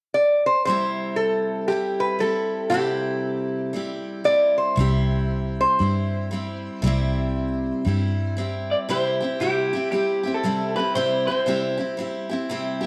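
A swung 4/4 groove at 117 BPM sets an easygoing country feel in C major, heartfelt and unhurried, in this cut from a longer piece. A lap resonator guitar carries the melody from 0.1 s, its fingerpicked slide tone metallic and nasal, over a bright, full-bodied dreadnought acoustic guitar whose picked accompaniment holds up front, finger squeak and all. At 4.8 s a vintage foam-muted electric bass joins with a dark, round, amped low end. From 8.7 s an electric guitar through a small old amp takes up a second line, twangy, slightly broken-up and lo-fi, trailed by tape echo, as the music moves into a new section with a guitar solo. A wet echo chamber and a small room lend the mix a close, vintage atmosphere.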